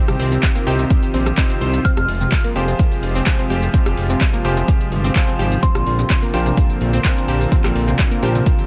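Driving and emotional, this progressive house passage, cut from a longer piece, moves at 127 BPM in a straight 4/4 over Cm, Fmadd9 and Bbadd9 chords. An overdriven electronic kick sits up front, joined by a deep house kit of handclaps, rim click, shaker and metallic hi-hats, both set in a small room. A fat, saturated analog bass of detuned sawtooth, square and wave-folded tones carries a filter sweep, while a lush unison pluck spins delayed arpeggios in the background and a brilliant grand piano adds stabs with audible action noise and long sustain. A smooth, soft-attack analog pad holds chorused chords behind them, with the pad, piano, bass and pluck pumping to the sidechain. A glassy, crystalline FM bell with a warbling, vintage tone plays brief melodic phrases at 1.8 s and 5.6 s, treated with chorus, delay and sidechain pumping, all within a digital ambience.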